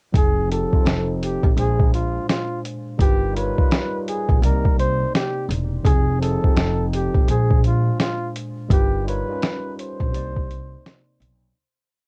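A slumped, off-grid hip-hop beat at 84 BPM in 4/4 swings its sixteenths, driven by a dusty soul sampler-style kit with a thumpy kick, fat snare and hi-hat that sits up front, compressed and gritty with vintage 12-bit sampler crunch and cassette tape coloring. This short, nostalgic and melancholic lo-fi hip hop piece in F dorian moves through Fm7, F7, Bb9, G7alt and Cm9 and repeats the cycle. A pizzicato upright bass plays a sparse, woody and dark line with slides and chromatic approach notes. A worn, slightly out-of-tune tine electric piano, heard as if through built-in speakers and softened by cassette tape, pushes spread chord voicings underneath. A breathy, mellow flugelhorn carries a short looping jazz melody with vibrato and scooped notes, and the home-recorded sound with light reverb fades out from 8.7 s to the end at 11.6 s.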